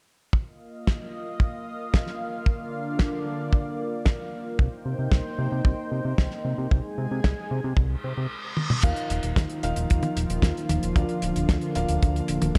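A straight 4/4 italo disco groove drives this danceable, romantic cut from a longer piece, anchored by a dry, tight acoustic kick placed up front and a damped 70s kit with hi-hat, a fat snare, toms and dark crash cymbals, both carrying a rolled-off top and studio reverb. Over it, a lush, full-bodied unison pad of detuned sawtooth and square waves holds sustained chords, with a slow attack, long release, a warbling chorus and vintage 12-bit sampler grit. At 4.6 seconds a fat, thick analog bass enters up front, its detuned sawtooth tone shaped by a fast attack and a filter sweep. An electronic reverse cymbal rises at 8.0 seconds into a drum fill. At 8.8 seconds a new section begins, with mellow stabs from a dark grand piano trailing tape echo. The dark, warm production sits in light reverb and small room ambience.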